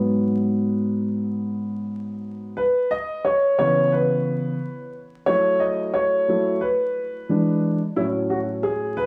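Swung sixteenths at 89 BPM in 4/4 carry this smoky, mellow hip hop fragment in C# minor (tuned to A4 = 441 Hz), where a dark, boxy, up-front grand piano plays alone from 0.0 to 9.1 seconds through G#m7, C#m7, F#m7, E7 and A6, set in light reverb and small-room ambience under a layer of vinyl crackle.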